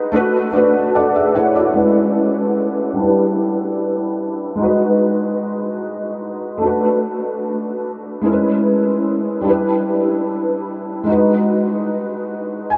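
A felt-muted upright piano plays alone from the first moment, its thick felt giving a soft, intimate tone that sits up front in the mix. This is a moody, late-night R&B piece in a straight 4/4 feel, cut from a longer work. The piano is shaded by ensemble chorus, a low-pass filter and tape echo, all set inside a huge ambient reverb that leaves the whole mix dreamy and soaked. A short piano fill arrives at 0.5 seconds, and from 1.8 seconds a filter sweep colors the instrument through to the close, where another brief fill appears at 12.3 seconds. Underneath, the harmony drifts through minor seventh chords, moving from Bm7 and C#m7 to Em7 and G#m7 before circling back again.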